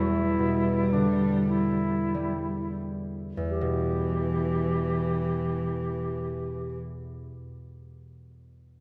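In a rubato 3/4 that drifts between 42 and 59 BPM and slows through the opening 3.5 seconds, this brief excerpt of a mournful, longing Celtic slow air in E minor moves from Em7 to Em. A single dark, bowed cello with vibrato carries the low melody, while a pure wooden flute with tongued notes, vibrato and rolled-off highs traces a second line above, both stopping at 6.8 seconds. A fingerpicked concert harp rings beneath them until 7.5 seconds, and a moderate church reverb lends the whole a spacious, hallowed air.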